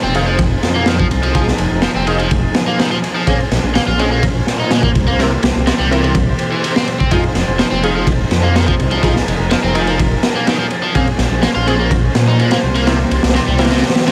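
A crunchy, saturated breakbeat kit with a punchy kick and dark cymbals drives this energetic, raw breakbeat excerpt at 125 BPM in F minor, alongside a rumbling detuned saw bass, an overdriven double-tracked electric guitar riff with 12-bit sampler grit and dub echo, bright orchestra-hit-style synth stabs washed in phaser, cassette tape and echo in the background, and distant, veiled con sordino strings pumping beneath a layer of vinyl crackle over Fm7, Bbm9 and C7.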